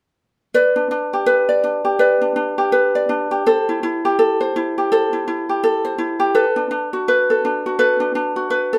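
Easy-going and carefree, this short pop excerpt rests on an acoustic ukulele, fingerpicked with a light, bright touch and placed up front in the mix. Set to a relaxed swung sixteenth-note feel, it moves through G, Am7 and Bm7 chords from 0.6 seconds to 8.8 seconds. A moderate studio reverb gives the live-in-one-room sound a gentle sense of space.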